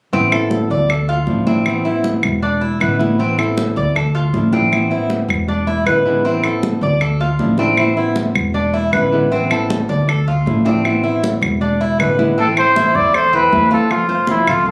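A breathy, whispered trumpet with vibrato steps up front at 12.4 seconds to carry the melody over a nostalgic, sultry Cuban son and guajira groove at 157 BPM in A harmonic minor, where a fingerpicked flamenco guitar and a metallic, double-strung Cuban tres play accompaniment and arpeggios through a cycling Amadd9, Dmadd9 and E7 progression, a pizzicato upright bass anchors the low end, and high-tuned, thick-skinned congas sit beside close, woody claves, all captured on a phone in a room with club reverb and compression in this excerpt cut from a longer piece.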